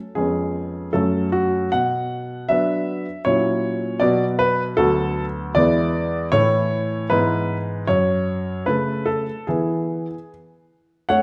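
Graceful and cheerful, this short excerpt from a classical-period piano sonatina moves at 77 BPM in a straight 2/4, its solo grand piano sounding clear, intimate, natural and up front with audible action noise across a range from D2 to F#5, beginning at 0.2 seconds on C#7/E# and F#m, passing through Bm and E7 to A, and settling on E at 9.5 seconds within the moderate reverb of a recital hall.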